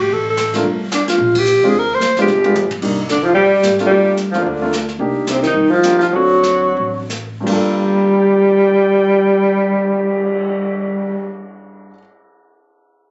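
A swinging 4/4 pulse with lilting eighth notes drives this short small-group jazz passage, cut from a longer piece, with a relaxed, late-night mood. An upright bass with a woody, thumpy gut-string pizzicato sound and a brushed drum kit with dark cymbals and a boomy kick support the music. The grand piano comps with short-sustained, warm chords in the background. A mellow alto saxophone leads the melody up front, using subtone, vibrato and scooped notes. At 3.1 seconds a breathy tenor saxophone joins with a lower second line in the same smooth jazz style. After a band accent, a drum fill leads into the next section, and the group slows down between 5.0 and 7.5 seconds before moving into a final passage, heard through the roomy, compressed sound of a phone recording in a club, with a dull top end.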